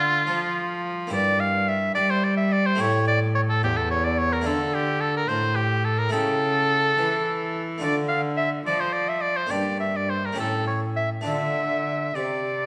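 Introspective and solemn, this baroque-style sonata movement with continuo moves in a steady 12/8 at 71 BPM in D minor, cut from a longer piece. A clear oboe sings the solo melody up front with light vibrato, while a rich, reedy cello with gut-string tone bows the bass line and a full, plucked harpsichord with two sets of strings fills in the harmony. The harmony turns through Gm and A7 before settling back on Dm at 11.3 seconds, all in the wet bloom of a recital hall.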